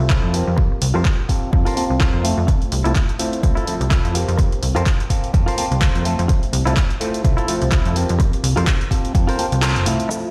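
Filtered disco house at 126 BPM with a light 16th-note swing, this sunny, joyful excerpt from a longer piece rests on a Gm11 chord, where a punchy, tape-touched electronic kick sits up front beside a plucky, funky sawtooth-and-square analog bass, while a drum machine re-recorded in a small room supplies handclaps, hi-hat and shaker. An overdriven, stringy clav through a combo amp adds phaser-colored accompaniment, and a bright, twangy, direct-recorded clean electric guitar plays a picked riff, with the clav, bass and guitar all pumping under sidechain compression and a low-pass filter. The kick drops out at 9.6 seconds on a band accent, and a lush symphonic string section enters at 10.1 seconds in the background, carrying 12-bit sampler grit, all set in a large studio reverb that sounds like a big system playing in a bare room.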